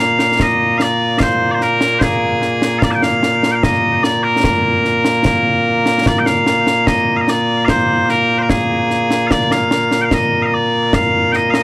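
A gritty, dry hardware recording with light reverb carries this proud, ceremonial fragment of Scottish pipe music in 2/4 at 74 BPM in Bb mixolydian, where loud, piercing bagpipes with tape echo sustain a continuous solo melody up front from Bb2 to A5, a close, acoustic concert snare drum and concert bass drum with dark cymbals join at 0.2 s, and the same strain sounds twice, starting over at 6.1 s.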